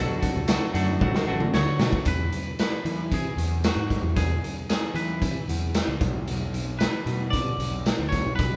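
A straight 4/4 pulse at 114 BPM drives this carefree, wistful indie rock excerpt in E mixolydian, where a raw garage drum kit, punchy and gritty up front, plays a fill from 1.0 to 2.1 seconds beneath a fuzz-laden picked electric bass and a crunchy, double-tracked overdriven guitar riff that stops at 2.0 seconds, while a clean, twangy electric guitar melody runs throughout over D, E and Bm chords in the lightly reverberant sound of a band playing live in one room.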